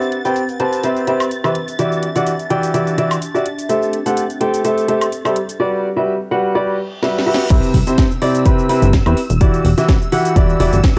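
Swung 16ths at 126 BPM in 4/4 carry this soulful, bittersweet piano house excerpt, led by a clear, up-front baby grand riff that pumps with the sidechain over Cmaj7, Em9, Am7 and Gmaj7 chords. Filtered house drums with a cracking snare, metallic hats, cabasa, woodblock and crash sit beneath it, while a shimmering vintage string-machine violin part and a warbling, nostalgic tape-like pad linger in the background until the pad stops at 5.6 s. A reverse cymbal from 6.8 s and a drum fill from 7.0 s lead into the drop at 7.5 s, where a punchy electronic kick and a funky, plucky analog bass enter, and the mix keeps the light digital ambience of a home cassette recording.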